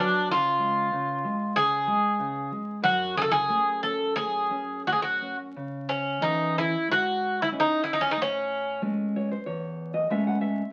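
Longing and mournful, this brief fragment of a fado-style ballad unfolds in a free, rubato 4/4, with a picked Greek bouzouki carrying the melody in a metallic, double-strung voice touched by octave-doubled strings, while a full-bodied, fingerpicked nylon-string guitar gives deep classical accompaniment beneath it, both up front. The harmony moves from C# through F#madd9 and C#madd9 to Amaj7, and after the bouzouki falls silent at 8.8 seconds the guitar closes with a fill until 10.7 seconds. A wet studio reverb and the crackle of a very old 78 rpm record give the sound an antique patina.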